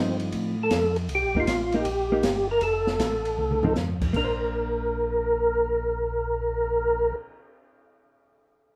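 A moderate stone room gives this live soul jazz organ trio a natural reverb of moderate length, with the players heard together in one space. At 158 BPM in Bb major, the groove swings in 4/4 with a soulful, swinging mood, in a brief cut from a longer piece. Up front, a percussive tonewheel organ carries the melody with third harmonic percussion, chorus vibrato and a slow rotary speaker giving it a round, clean voice. A second, mellow tonewheel organ handles the bass line, lightly overdriven and turning through its own slow rotary speaker, while a dark, compressed hollow-body electric guitar comps with a fingered, clean tone. The acoustic drum kit enters at 0.2 seconds with dark cymbals, a punchy kick and a rolled-off top, and a fill at 3.4 seconds leads into a new section at 4.2 seconds that settles on a Bbadd9 chord after the F7, Cm7 and F changes.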